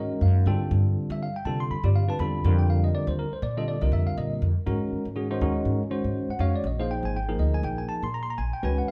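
A clean, bell-like tine electric piano opens with a short fill at the very start, alongside a woody, thumpy upright bass played pizzicato on steel strings. This soaring, funky stretch of electric jazz fusion, cut from a longer piece, moves at 121 BPM in 4/4 with a light swing on the sixteenths. The electric piano comps through its built-in speakers on suspended ninth chords rooted in F mixolydian, and both parts sit up front. At 4.7 seconds the harmony lifts into Ab mixolydian, with a thirteenth-sus chord that gives the passage fresh buoyancy as the bass keeps anchoring the low end. The two players sound as though they share one large studio, wrapped in a moderate reverb that adds air and a live, cohesive feel.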